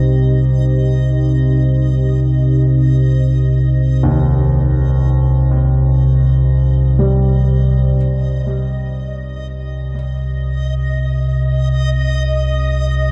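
Dark ambient drone cut from a longer piece, desolate and ominous, where an up-front rumbling detuned drone anchors the low end as a moody chorused pad holds sustained chords until 8.0 s, a faint, bright, granular backwards texture swells high above, and from 4.0 s a mellow, intimate baby grand piano with audible action noise plays low arpeggios through tape echo, all bathed in a wet cathedral reverb.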